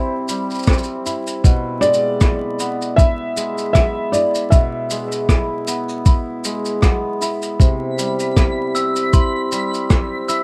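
Folktronica with a playful, delicate mood and a gentle 16th-note swing, opening on a felt-muted upright piano whose soft, intimate melody carries audible action noise and tape echo until 6.0 seconds. Beneath it, an up-front hammered dulcimer rings out shimmering arpeggios through a low-pass filter, while a thumpy, muffled electronic kick sits forward and a distant, roomy shaker and rim click with a rolled-off top keep time. Near the end, a faint twinkling granular texture enters at 7.9 seconds and a metallic, bell-like glockenspiel with hard plastic mallets adds a second line at 8.7 seconds, all over a dry sound laced with vinyl crackle.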